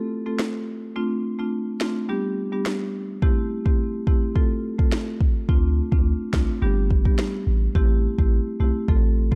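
A marimba played with medium mallets opens this bouncy, hypnotic dancehall groove, its dark, smooth tone sitting up front as it cycles through F/A, Dm7, G and Am7 in D dorian. At 0.4 seconds an electronic, produced afro-pop drum kit enters, pairing a deep kick with a sharp snare and rim clicks in a straight 4/4 at 106 BPM. At 5.5 seconds a boomy, sine-like 808-style bass arrives, its fast attack decaying into a mellow low end that sits prominently beneath the marimba. Digital ambience wraps the whole in a dark, warm production, tuned slightly sharp to A4 = 441 Hz. This brief excerpt is cut from a longer piece and stays within a single repeating section.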